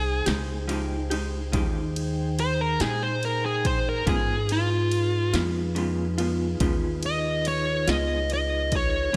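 A smooth, overdriven lead guitar takes a soulful solo across this brief, brooding slow blues in 12/8 at 47 BPM, moving from an Fm9 chord to Db7 at 4.1 seconds. A woody, thumpy upright bass on gut strings sits up front beside it, while a mellow, flute-like tonewheel organ holds soft chords through a slow rotary speaker. From 0.3 seconds, a lo-fi, slightly broken-up guitar through a small old amp adds tremolo and slapback echo, and a punchy analog drum machine brings kick, snare and ride, all filling a big arena sound with concert hall reverb.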